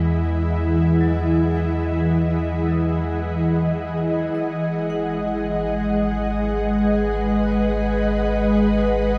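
Warm and weightless, this ambient passage in free time and E major is cut from a longer piece and floats on an ethereal, airy pad of sustained chords up front with ensemble chorus, moving from Emaj7 to G#m7 at 4.4 seconds while a very quiet, metallic, ringing vibraphone struck with hard mallets traces bright arpeggios and a deep, round sine sub bass holds the floor, all set in a dreamy mix soaked in a huge reverb with a 7.3-second tail.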